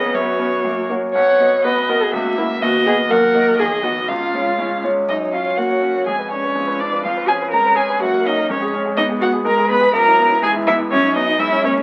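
Violin, cello and bright grand piano open together, with the viola joining at 0.1 s, in a quick, cheerful and graceful classical-period movement for piano quartet at 123 BPM in 2/4, played with rubato, starting in B major and moving to F# major from 3.1 s. The up-front violin carries the melody with a rich, focused, vibrato-laden tone, while the cello's smooth-topped second line and the viola's expressive portamento sit beneath, and the piano adds brilliant, short-sustained accompaniment. A wet studio reverb and the crackle of a very old 78 rpm record colour this short cut from a longer piece.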